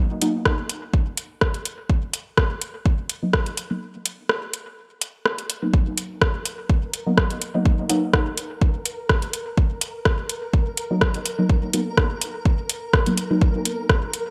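This dub techno excerpt moves at 125 BPM in 4/4 with a light swing on the sixteenths, and its mood is cavernous and meditative. A deep, mellow chord stab built on F#add11 sits up front, its soft, warbling, detuned tone treated with chorus, phaser, dub echo and sidechain pumping while a filter sweep runs across it throughout. The stab drops out after its opening hit, returns at 3.2 seconds, and comes back again at 10.9 seconds, with a break falling between 3.8 and 5.7 seconds. An overdriven electronic kick and a deep house kit of metallic hi-hats and rim clicks sit up front with the layered heft of a large room. From 6.5 seconds a faint, flickering granular texture on A#4 drifts in beneath, grainy and sustained with its own reverb and pumping. The production is bright in a 1980s digital style, with light reverb over the whole.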